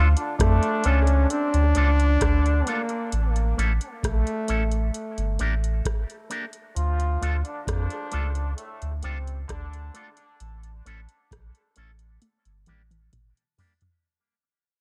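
Dub reggae at 66 BPM in D harmonic minor, meditative and hypnotic, this excerpt cycles through Dm, A and Gm as a round, up-front sub bass anchors a booming analog drum machine with a deep kick and metallic hats. A brilliant solo trombone carries the melody with light vibrato until 4.9 seconds, over a nasal, straight-muted trombone section and a twangy, clean envelope-filtered electric guitar, with dub echo trailing the horns, guitar and drums. A break runs from 3.1 seconds, a drum fill closes out the final stretch from 12.2 seconds, and the whole passage fades out within a digital ambience of light reverb.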